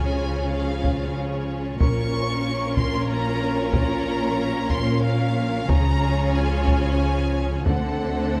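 Cinematic, epic orchestral film score in Bb minor, moving at 93 BPM in a straight 3/4, with a relentless, dramatic mood across this short excerpt cut from a longer piece. A distant chamber violin section carries the melody high up with soft-attack, expressive vibrato, while a lush symphonic violin section plays a smooth second line beneath it and a clear, focused viola section fills in the accompaniment. Mellow French horns hold sustained chords in the background, and a rich cello section joins a close, even double bass section on the bass line. A taiko ensemble enters at 0.8 s, struck with hard sticks and sounding compressed and saturated, the loudest part of the mix, driving on until 8.3 s. The harmony moves from Db to Bb minor at 1.8 s, back to Db, and lands on D7 at 7.7 s. Light reverb and close, detailed microphones keep the bowed strings and drums vivid.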